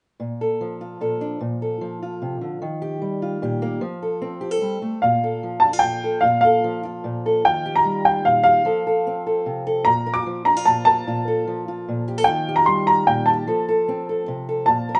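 A fingerpicked acoustic guitar opens this folk excerpt at 0.2 s, its old ladder-braced body giving a dark, boxy tone with the dull edge of old strings. The music moves in a straight 3/4 at 149 BPM, tuned slightly sharp to A4 = 443 Hz, cycling through Bbmaj7, Ebadd9 and F. At 5.0 s a bright upright piano enters high in its range, carrying the melody over the guitar's accompaniment. The piano is brilliant and woody, slightly detuned and worn, with short sustain and audible action noise that makes it feel intimate and present. Both instruments sit up front, captured live in one room with moderate studio reverb and a soft top end, and the anthemic, warm mood holds through the final F chord at 13.5 s.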